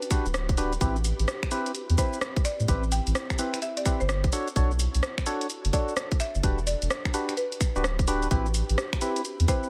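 A digital ambience wraps this moody, bouncy two-step garage cut, taken from a longer piece, with a swung groove. A tight, layered electronic kick and a deep, round dub sub bass, sidechain pumping and entering at 0.3 seconds, anchor the low end, while a punchy analog drum machine, re-recorded in a large room, scatters finger snaps, hi-hat, rim click and shaker across the beat. A buzzing marimba with medium mallets carries the melody, its woody hardwood tone dry and close-miked yet trailed by tape echo. Hollow, nasal organ stabs with a wave-folded edge and vintage 12-bit sampler grit punctuate the harmony through chorus and tape echo. Behind them an ethereal, airy pad holds sustained chords through ensemble chorus, phaser and its own reverb, pumping in the background as the progression moves from a rootless Em9 through Am9 and Bm9 before returning to Em9 and Am9.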